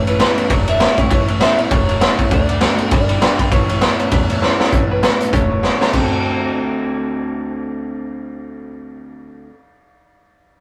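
A swung 4/4 pulse at 198 BPM drives this upbeat, retro rockabilly fragment in D mixolydian, moving from A7 through D7 and G7. The raw garage drum kit sits up front with a gritty, saturated sound, a punchy kick and a high-tuned snare, fires off a fill at 4.4 seconds, and drops out at 6.0 seconds. Underneath, a woody pizzicato upright bass thumps in the background, while a slightly broken-up electric guitar through a small old amp plays a riff bathed in spring reverb. A second electric guitar carries the twangy, lo-fi lead melody, with a jangly tack piano adding metallic, short-lived chords in the background. A very quiet dreadnought steel-string acoustic guitar fills out the accompaniment, all caught in a rough rehearsal-room recording with light reverb.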